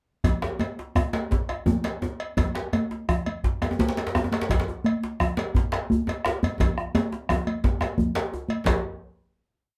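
Set in a rolling 12/8 metre with a straight feel, this complete West African traditional piece for drum ensemble gathers pace steadily from start to finish, carrying an earthy, festive mood. A deep, dark bombo lays down an evenly spread pattern underneath, while a metallic cowbell sits quietly in the mix playing a bell pattern. Bright, high-tuned congas with a thin skin are struck with hard hands and heard close, and a medium-tuned djembe with metal rattles adds a softer-handed, evenly spread part. Up front, a second djembe, deep and carrying its own metal rattles, plays lead drum phrases with hard hands in a more live-sounding space. A drum fill runs from 6.6 to 8.7 seconds before the ensemble closes on a final hit, all within a small room and a dark, warm production.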